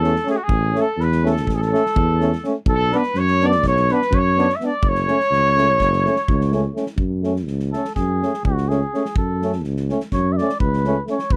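This is Balkan folk played by a brass band, a restless and virtuosic cut from a longer piece that drives along in a straight 9/8. A cup-muted cornet carries the melody up front, its tone veiled and soft with a light vibrato, while a clear trumpet sings a second line from a roomy distance until it drops out at 6.8 seconds. Beneath them, a trombone with a gentle attack and a warm euphonium sit back in the space as accompaniment, and a mellow, close-miked tuba anchors the bass. A loose acoustic drum kit with a tight kick and a medium-tuned snare adds a pumping small-room sound as the harmony moves from A to Bm to F#m. From 7.0 seconds the cornet takes a solo to the end, and the whole recording has a dry, classical-style brass character.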